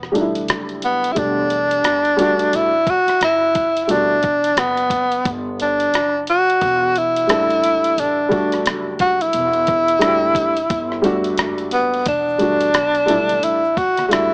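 Through a lightly reverberant cassette haze with a small-speaker tone, this nocturnal, smoky jazz-hop cut in E minor rides a swung 88 BPM groove over a lingering Em11 chord: a gritty, compressed sampler-style kit with a thumpy kick, hi-hat and rim click sits under a quiet, woody pizzicato upright bass and a dark, slightly detuned upright piano, while a breathy, whispered tenor saxophone with vibrato, scooped notes and analog delay carries an intimate solo up front from 0.8 seconds, and a very quiet, saturated egg shaker and congas slip in at 12.1 seconds.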